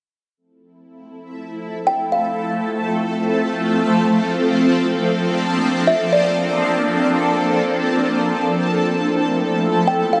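A shimmering ambient pad opens this dreamy, floating hip hop excerpt at 1.3 seconds, its slow-attack, detuned chords sitting up front and glowing with an ethereal, granular, octave-up sheen shaped by chorus, phaser and its own reverb. The harmony drifts in free time from Fmaj7 to Bbmaj9 and back to Fmaj7, giving the passage a suspended, weightless quality. A kalimba carries the melody in brief, high fragments, the first arriving at 1.9 seconds, with soft, woody fingertip plucks softened by a low-pass filter and trailed by digital delay. Its short, mellow notes return twice more, the last touching in at 9.9 seconds as the pad sustains beneath. A huge, wet ambient reverb with a long 6.2-second tail surrounds the whole arrangement, letting the sounds hang and blur into a hazy, spacious atmosphere.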